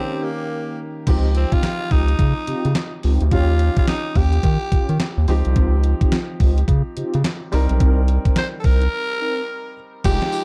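This excerpt from a longer R&B piece in a new jack swing style opens with a growling tenor saxophone, a clear concert grand piano and mellow synth brass stabs together over an Eb7 chord. The saxophone carries the slick, bouncy melody with a raspy, breathy tone and light vibrato, while the piano accompanies with an intimate sound and audible action noise. At 1.1 seconds a round analog bass and a clean 12-bit drum machine enter at 107 BPM in 4/4 with a swung sixteenth-note feel. The drums bring a thumpy kick, fat snare, hi-hat, handclaps, tambourine and crash cymbal, with a tape-tinged, sampler-style sound up front, and the bass is deep and square-edged. The chorused synth brass sits in the background, and the harmony moves through Dbmaj9#11, Eb9 and Cm7 in a dark production with little reverb.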